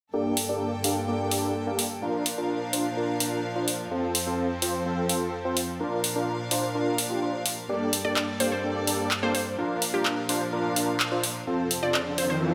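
Huge, detuned supersaw chords lead this euphoric, uplifting festival progressive house excerpt in Bb major at 127 BPM, playing an up-front riff through a low-pass filter and dub echo over a Gm(add9), Bb and F progression. A layered big-room drum kit with handclaps and metallic hi-hats sits close in the mix, while a rich chamber string section holds earthy, bowed chords with light vibrato. A crystalline wavetable pluck carries the melody from 8.0 seconds with chorus and dub echo, an electronic riser arrives at 11.7 seconds, and a lush hall reverb surrounds the whole arrangement.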